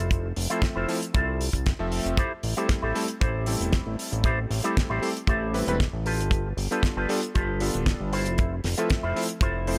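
A fat, saturated analog bass sits up front in this sleek, cosmic nu-disco excerpt, its detuned sawtooth tone thick and sustained from the very start while a tight, dry kick drum punches alongside it at 116 BPM in a straight 4/4. Over them, an envelope-filtered electric guitar plays a bright, twangy picked riff in clean tone, colored by analog chorus and tape echo. A damped 70s drum kit adds hi-hat and a fat snare at 0.1 seconds, keeping the groove acoustic and dry. At 0.5 seconds a clear vintage electric grand piano comes in as accompaniment, its chorused unisons and clangy low end pumping with sidechain compression and trailing tape echo. The harmony in A minor moves from Fmaj7 to Am7, then G9, and back to Fmaj7, all set in a small room ambience.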